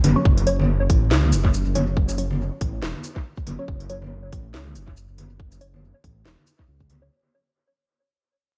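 A deep, rumbling detuned saw bass opens this heavy, brooding deep dubstep fragment in a swung half-time feel at 0.0 seconds, alongside a garage drum kit of crisp hats, shaker and cracking snare, plus soft-handed, ringing congas that sit distant in a large room, both carrying dub echo; a muted, nasal filtered chord stab with phaser and echo enters at 0.2 seconds under a filter sweep, and a tight, up-front electronic kick arrives at 0.3 seconds, all within an echo-heavy mix dusted with vinyl crackle that fades out throughout.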